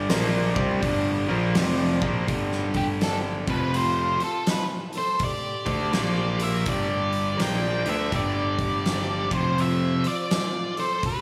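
A dark, fuzzed-out octave lead guitar sits up front with the melody from 2.8 seconds, in this swaggering, gritty slice of blues rock and southern rock at 82 BPM in 4/4 with a swung eighth-note feel. Beneath it, a cranked, double-tracked stack guitar drives an overdriven, picked riff with slapback echo, joined by a growly picked electric bass that blends direct and amped tones. A huge arena drum kit with a fat snare, punchy kick and hi-hat pounds through a big room, while a second, bluesy overdriven lead guitar traces a distorted line in the background alongside the fuzz lead. At the opening, a thick, gritty tonewheel organ holds sustained, percussive chords through a slow rotary speaker before dropping away at 2.3 seconds. The harmony moves between G5, F5 and Bb5, and a lush hall reverb gives the whole excerpt a big arena sound.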